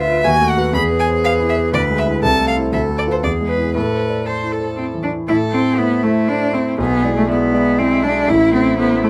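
Close, detailed microphones and light reverb frame this short cut from a quick classical-period piano trio movement in A minor, cheerful and graceful at 120 BPM in 3/4. A single bowed violin carries the melody with rich, focused vibrato, while the cello, clear and intense with a smooth top, sits up front on a second line. The concert grand, intimate and natural with deep bass, long sustain and audible action noise, accompanies throughout from 0.0 to 9.1 s, as the harmony moves through E and E7/D before settling on Am at 8.3 s.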